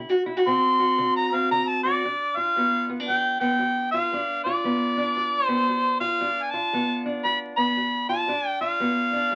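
A fingerpicked steel-string acoustic guitar opens this gritty, rollicking country blues cut from a longer piece, its parlour tone dark and boxy as it accompanies in a swung 4/4 over a D7 chord. At 0.5 seconds a bright, close-miked harmonica enters up front, carrying the melody with a short jazz-style solo that runs to 2.0 seconds. Its line is coloured by light vibrato and scooped notes, sitting high above the guitar's lower register. At 2.0 seconds the harmony moves to G7 and the second section begins, with guitar and harmonica both carrying on until the cut ends at 9.3 seconds. A moderate club ambience surrounds the duo, and the sound has the crackle and age of a very old 78 rpm record.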